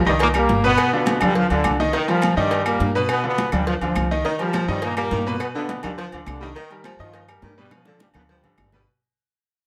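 A moderate studio reverb gives this short, fading salsa cut a lively sense of space, and the fiery, danceable groove runs in a straight 4/4 from the first beat. A tight, brilliant trombone section carries the melody up front, while a present, worn concert grand piano with audible action noise and deep bass supplies the accompaniment. Underneath, a growly, thumpy pizzicato upright bass on steel strings anchors the low end. Thin-skinned, high-tuned congas, ringing metal-shelled timbales with agogo bells, round low-tuned bongos and cowbell, and woody claves in the background fill out the percussion. A mellow baritone saxophone with light vibrato joins at 4.3 s as a distant second line over the harmony, which moves from Cm7 to G7 and G7alt. A drum fill starting at 7.7 s closes the passage as the excerpt fades.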